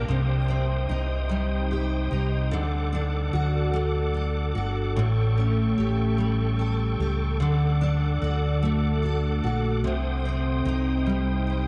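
A dreamy mix soaked in the long wash of a cathedral-like reverb opens this dramatic, aching pop ballad in a straight six-eight, cut from a longer piece. Up front, a double-tracked steel-string acoustic guitar picks a full-bodied dreadnought accompaniment throughout, joined by a round, punchy fingered electric bass holding down the low end. Above them, a reedy tonewheel organ sustains chords with audible key click, its tone shimmering through chorus vibrato and a fast rotary speaker. A clean, compressed twelve-string electric guitar adds very quiet arpeggios only in the first 0.7 seconds before dropping away. The harmony moves through Cm, D, A7 and D before returning to Cm at 9.8 seconds, giving the brief passage a yearning, unresolved pull.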